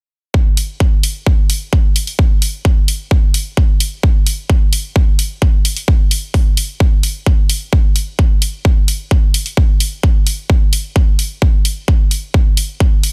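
A punchy electronic kick drum opens this EDM passage at 0.3 s, joined almost at once by an electronic hi-hat at 0.6 s. The tempo sits at 130 BPM in a straight 4/4, and the mood is anthemic and powerful despite the spare drum-only lineup. Both parts sound layered and produced, placed up front with a small room ambience around them, while the kick carries noticeably more weight than the hi-hat. The overall sound is dry, with a dense, heavily limited modern master that keeps the drums hard and close. Cut from a longer piece, the section runs as a single stretch until the hi-hat stops at 13.1 s.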